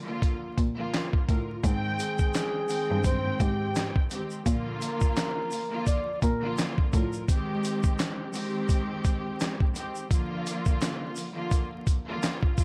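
Vinyl crackle and light reverb frame this confident, warm boom-bap hip-hop excerpt at 85 BPM with a swung 16th-note feel, where a lush, sul tasto studio string section moves between Bb and Abmaj7 over a gritty, compressed sampler-style drum kit of thumpy kick, fat snare, hi-hat and handclaps; a bowed cello carries the bass with vibrato and portamento until 7.2 s, a grainy tube shaker sits in the background, and a veiled, breathy trumpet with bucket mute whispers a jazz-style melody with scooped notes from 2.0 to 6.5 s.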